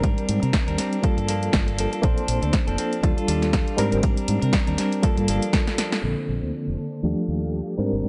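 This filtered disco house excerpt feels sunny and joyful, with a swung sixteenth-note groove moving through lush ninth chords. A reedy, lightly overdriven electric piano carries the accompaniment through its own small speakers, colored by fast tremolo, phaser and pumping sidechain, while a bright, twangy clean guitar plays a picked, compressed riff above a foam-muted fingered bass. An overdriven, up-front electronic kick and a punchy analog drum machine supplying overdriven snare and pumping hi-hats drive the beat until a drum fill at 5.7 seconds and a band accent at 5.9 seconds. At 6.0 seconds the percussion drops out and a vintage sawtooth string machine with a soft attack and ensemble chorus slips in far in the background as a filter sweep runs to the end. The mix is dry and gritty, with a dulled top end and the low-pass filter shaping the keys, guitar, bass and strings.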